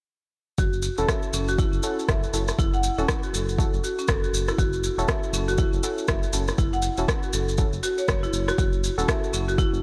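A swung 120 BPM afro house groove in 4/4 sets an earthy, hypnotic mood in F# minor, resting on a single F#m7 chord in this short cut from a longer piece. An overdriven deep electronic kick, grainy maracas and a layered electronic rim click entering at 1.1 seconds drive the pulse beneath a smooth sawtooth synth bass. A hard-mallet marimba plays arpeggios through a low-pass filter and tape echo, while round analog key stabs with chorus join at 1.0 seconds, both pumping to the sidechain in a dry, gritty hardware sound with light reverb.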